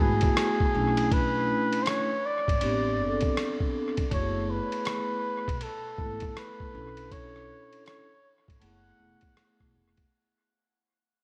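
A breathy, whispered flugelhorn carries the melody through this mellow, nocturnal jazz-hop excerpt, its dub echo shared with a ringing soft-mallet vibraphone that carries minor-eleventh chords, while a woody, growly pizzicato upright bass and an up-front, muffled, tape-toned sampler-style drum kit with thumpy kick, hi-hat, ride and rim click fill out an echo-heavy mix that fades out across the whole 10.1 seconds.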